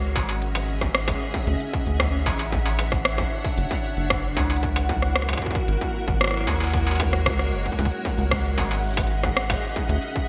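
Cerebral and melancholic, this IDM fragment cut from a longer piece moves at 114 BPM in a straight 4/4, with a bright 1980s-style digital sheen and a light digital ambience. A cloudy, evolving granular pad carries sustained chords through the whole passage, its blurred, detuned unison voices softened by built-in reverb and breathing with sidechain pumping. Beneath it, a rubbery, hollow square bass with tube saturation gives a dark, bouncy low end until 10.0 seconds. Entering at 0.2 seconds, a distorted electronic kick pairs with an up-front industrial kit of cabasa, crisp hi-hat, rim click and struck metal, treated with gated reverb and digital delay and given a tape-warm, large-room character. A mellow, flickering grainy texture hovers in the background on a single high note, dressed in lush chorus and reverb. The harmony circles from C#madd9 through Dmaj9, F#7 and G#9sus4 before returning to C#madd9.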